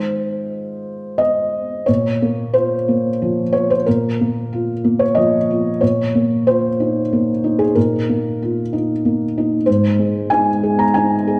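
A dark, reverberant recital-hall sound surrounds this reflective, melancholic excerpt of neoclassical minimalist piano in Bb minor, where a lone felt-muted upright piano, intimate and up front with thick felt and audible action noise, moves with uneven, rubato beats in 3/4 at 92 BPM through chords from Fm7/Ab to Bbm at 1.9 seconds and on to Ebsus2/Bb and Ab.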